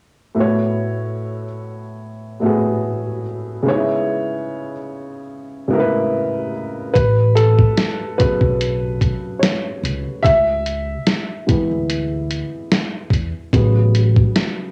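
A cassette haze and small-room ambience, with a moderate studio reverb, give this short cut from a longer lo-fi hip hop piece a homespun, intimate feel. It moves at a mellow, dreamy 73 BPM in 4/4 with a gentle 16th-note swing, in A major, drifting between A69 and C#m7 chords. A dark upright piano sits up front from the first moments, its vintage, smooth tone carrying audible action noise and short sustain, softened further by tape colour and a low-pass filter. At 7.0 seconds a pizzicato upright bass with a woody, steel-strung tone enters alongside a compressed, sampler-style drum kit of muffled hi-hat, thumpy kick and medium-tuned snare, also tape-coloured and re-recorded in a large room. From that point the piano moves into a solo over the new groove until the close at 14.7 seconds.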